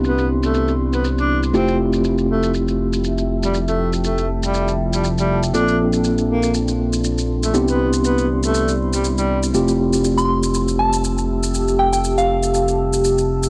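A lightly swung 120 BPM groove in 4/4 drives this relaxed deep house piece in F major, with a layered electronic shaker under a smooth, gliding sawtooth synth bass placed up front and clean tine electric piano stabs echoing through analog delay over Cmaj9, Fmaj9 and Bbmaj9 chords. A moody, detuned ambient pad holds sustained chords through a filter sweep, softened by chorus and reverb, while a distant, roomy tenor saxophone sings a mellow, vibrato-laden melody until 9.4 s. From 10.2 s a soft, pure FM synth bell carries a brief melody coloured by chorus, delay and 12-bit sampler grit, all captured in a dry, gritty hardware sound with light digital ambience.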